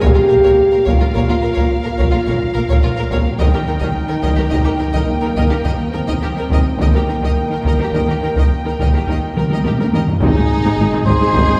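Adventurous and heroic, this cinematic film-score passage moves at 71 BPM in 12/8, cut from a longer piece and heard from further back in a wet concert hall. A taiko ensemble struck with hard sticks sits up front and drives the whole span, while a dark French horn section holds sustained chords. The melody comes from a lush, vibrato-rich violin section, shadowed by a second, more focused violin line, with rich violas filling the middle and cellos and a very quiet double bass section anchoring the low end. The harmony shifts from Bb to Eb at 3.4 seconds, and a taiko fill from 9.4 seconds leads into the arrival on Ab at 10.2 seconds. There, dark trombones, mellow trumpet stabs, a very quiet tuba and articulate calf-headed timpani join for a brief, weightier closing moment.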